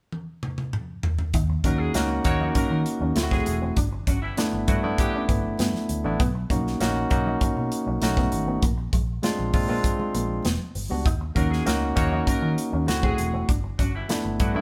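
Upbeat and urban, this short cut from a longer piece is polished 1980s jazz-funk pop in a straight 4/4 feel. It opens with a drum fill on a modern studio kit, airy and up front, with a punchy kick, a medium-tuned snare, hi-hat and toms, before the band arrives at 1.3 seconds. A vintage fingered electric bass, foam-muted, round and dark, carries the low end, while a barky tine electric piano, bright and lightly overdriven through a combo amp, sits up front as the accompaniment. Further back, an electric guitar with an envelope filter plays a clean, picked riff, and very quiet congas with thick, damped skins add compressed, saturated percussion. A tight horn section with light vibrato and a jazz-style, vintage character plays a second line from 1.6 to 5.2 seconds and returns at 11.4 seconds, all heard as a band playing live in one stone room with moderate reverb, over chords that include D#m7, D7, G6 and Bmaj7.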